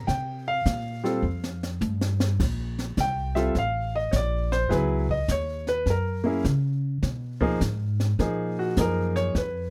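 Swinging and playful, this dry, closely recorded jazz piano trio excerpt at 103 BPM in 4/4 opens with a smooth, vintage concert grand out front, a woody, thumpy pizzicato upright bass, and a brushed kit with dark cymbals, a high-tuned snare and a boomy kick, which plays a fill from 1.2 to 2.4 seconds before the piano takes a solo through colorful suspended, minor ninth and major seventh harmonies until the cut at 9.7 seconds.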